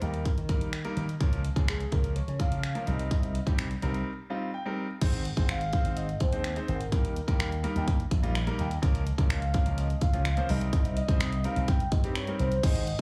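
Euphoric and upbeat, this dance-pop passage at 126 BPM in 4/4 pairs an up-front electronic pop kit, with a punchy kick, finger snaps, hi-hat and crash, with a bright, amped slap bass run through an envelope filter and pumped by sidechain compression. A clear, intimate grand piano, its action noise audible, carries the accompaniment over chords moving from Eb through Bbm/Db and Cm7 to Ab. A round, horn-like sawtooth synth lead with chorus, vibrato and digital delay sings the warbling, vintage-toned melody, while a brief break brings a piano fill from 4.1 to 5.0 seconds in this dry, studio-sounding cut from a longer piece.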